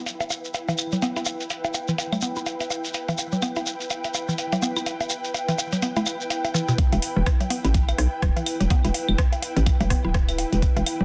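This cool, sparse minimal techno excerpt is built around a woody, round mallet-like synth pluck riff that enters at 0.7 seconds, its chorus and delay pulsing under sidechain pumping. At 125 BPM in 4/4 with a swung sixteenth feel in E minor, it opens over an ethereal, airy pad carrying ensemble chorus and built-in reverb, while a filter sweep on the synth arpeggio sound runs through the first section. A garage drum kit of metallic, overdriven hi-hats and rim clicks joins with tape-warm woodblock, bongos, claves and congas carrying dub echo, and a grainy, close, dry shekere adds texture until 6.8 seconds. The drop arrives at 6.8 seconds, bringing an up-front, knocking electronic kick with overdrive and a hollow, bouncy FM bass whose punchy, pumping notes sit deep in the low register. Light reverb surrounds a dense, heavily limited modern master.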